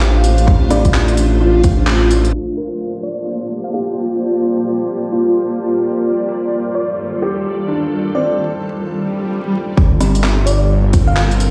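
A rainy, ghostly future garage excerpt in G minor at 129 BPM with a swung 16th feel opens on a soft, boxy felt-muted upright piano in the background, with audible action noise and sampler grit. Around it sit a cloudy, blurred granular pad, a reversed, dreamy swelling texture, a menacing, saturated detuned saw bass that pumps under the sidechain, a tight electronic kick up front, and a garage kit of handclaps, crisp hats and rim clicks. A bell-like, sparkling FM electric piano with chorus, tremolo and tape echo carries the melody as the kick drops out just before 1.9 seconds and bass and kit fall away at 2.3 seconds for a filter-swept passage over Gm11 and F9. An electronic swell at 9.0 seconds then brings the low end and beat back at 9.8 seconds, the whole mix bathed in lush hall and stone-room reverb with vinyl crackle.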